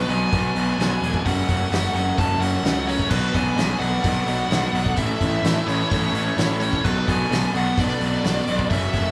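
Indie rock at 129 BPM in B dorian, bittersweet and restless, with a nasal lead guitar through a parked wah carrying the melody over two overdriven rhythm guitars sitting back in the mix, a growly fuzz bass up front, a loose kit with a fat snare, punchy kick and dark cymbals in a pumping room, and a very quiet shimmering string machine entering at 3.1 s with vintage sawtooth violins, all captured as a band playing live in one room with moderate studio reverb.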